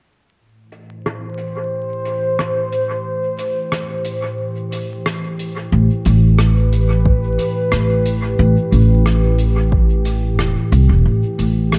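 Deep and hazy, this ambient dub fragment in A minor moves at 90 BPM in a straight 4/4, opening on an Am7 chord as a warbling, detuned, nostalgic tape-like pad with chorus and a slow attack sits up front beside a soft-mallet drum kit in a big room, its hi-hat and rim click low-pass filtered, soaked in dub echo and swept by a filter, before a woody pizzicato upright bass arrives up front at 5.7 seconds and a tape-warm electronic kick drum sounds in the background from 7.1 to 9.9 seconds, the whole set within an echo-heavy mix with vinyl crackle and light reverb that comes to rest on A7(no3).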